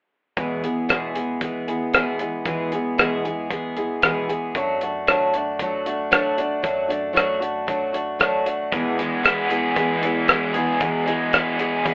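Heard through a narrow telephone filter, with a band playing live in one room and a moderate studio ambience, this nostalgic, open-road folk and heartland rock excerpt moves at 115 BPM in a straight 4/4 in E mixolydian, shifting from E to D/F# and back. A full-bodied jumbo steel-string acoustic guitar picks the accompaniment up front, alongside a dry, damped 70s drum kit with a tight kick, hi-hat and rim click, while a dark, round dub bass sits in the background. At 8.7 s a crunchy, double-tracked overdriven electric guitar with tremolo joins up front with a riff.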